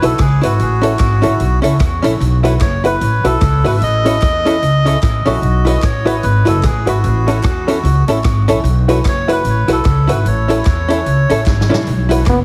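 Heavily compressed and radio-like under a light reverb, this cheerful, upbeat ska fragment, cut from a longer piece, swings along at 149 BPM in 4/4 in B mixolydian, rocking between Bsus4 and A. A reedy, nasal melodica carries the tune with a breathy, boxy small-room character, while a dark, clean, hollow-body archtop guitar picks out the accompaniment and a detuned, jangly honky-tonk upright piano adds short stabs from the background; all three are bathed in dub echo and plate reverb. Up front, a woody pizzicato upright bass with steel strings anchors the low end. A swinging big-band drum kit, natural and roomy with a punchy kick and medium-tuned snare, drives the groove with hi-hat and rim clicks, and very quiet, distant group handclaps sit far back in a large room. A drum fill at 11.5 seconds leads to a brief burst of warm, lightly vibratoed solo trombone at 12.3 seconds, just as the clip ends.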